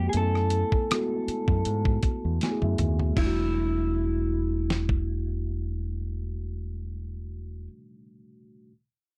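R&B and neo-soul at 79 BPM in E minor, this short excerpt cut from a longer piece carries a late-night, soulful mood, with a lightly swung sixteenth-note feel. An electric guitar played through a small old amp carries the melody between E4 and A4, its picked tone slightly broken-up, lo-fi and compressed, with a subtle chorus. Beneath it, a mellow tine electric piano plays clean, direct accompaniment, also touched with subtle chorus, and adds a fill from 2.0 to 3.2 seconds before ringing on alone until 8.7 seconds. A deep dub fingered electric bass sits up front with a dark, round sound, while a dusty sampler-style drum kit brings a thumpy kick, fat snare, gritty texture, rim clicks, hi-hat, crash and toms, rolling into a drum fill that leads the harmony from F#m11 to Em11 at 3.2 seconds. The recording is dry and close in a 1970s studio style, with little reverb.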